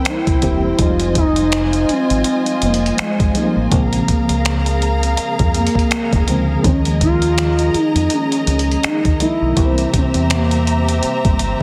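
A smooth, gliding lead with chorus and phaser sings a longing melody over a warbling FM electric piano with tremolo and a lush bowed string section, opening on C7 before moving through Fm7, Bbm7 and Eb7sus4 in this late-night contemporary R&B excerpt in Bb dorian at 82 BPM. A gritty, tape-warm sampler-style kit of finger snaps, hi-hat and thumpy kick enters at 0.1 seconds with a swung 16th-note feel, sitting up front with the sound of a large room. A dark, round fingered dub bass joins at 0.3 seconds, and the whole mix carries light reverb and a heavily compressed, radio-like sound.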